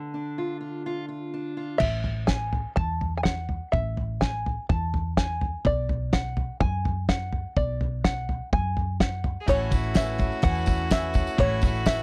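Uplifting and anthemic, this 12-second indie folk excerpt in A major moves at 125 BPM in a straight 4/4, its arrangement building steadily. It opens with an up-front, plunky open-back banjo carrying the melody over a fingerpicked parlour steel-string acoustic guitar, which plays only until 1.8 seconds. At that point a round, hollow-body short-scale electric bass and a cloth-damped, thuddy drum kit arrive, the kit sitting loudest with a fat snare, tight kick, dark cymbals and a gritty, saturated edge, driving a long fill through to the end. From 9.4 seconds a nasal, reedy fiddle adds a bowed second line, joined a moment later by a boxy, swing-style picked acoustic guitar, a very quiet, slightly detuned upright piano with audible action noise, a soft flute-like tonewheel organ with key click and slow rotary speaker, and a jingly tambourine in the background. The harmony travels from Dm through A5 and Bm before landing on A, and the whole piece has a dry, close 1970s studio sound with little reverb.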